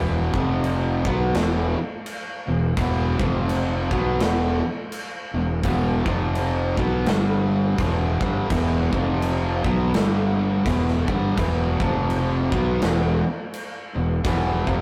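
Stoner and doom metal with a hypnotic, ominous swing, where a bright, double-tracked fuzz guitar riff and a round, overdriven fingered bass grind through an E minor vamp from the start, joined at 0.3 seconds by a punchy, big-room drum kit with glittering crash cymbals, all captured as a rough rehearsal-room recording with light reverb and warm saturation.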